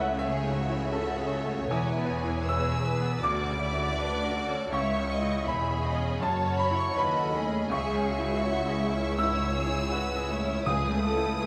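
Bathed in the wet reverb of a scoring stage, this bittersweet, moving fragment of an emotional orchestral film score unfolds in a loose, rubato 4/4, with a bright, brilliant grand piano up front carrying the accompaniment across its full range. Lush bowed strings with vibrato surround it: a smooth studio violin section sings the high melody over a focused symphonic violin section's second line, a viola section sits in the background, and cellos and woody double basses anchor the bass. Only at 10.7 s do very quiet, round timpani struck with soft mallets enter, just as the harmony returns to Amaj7/C#.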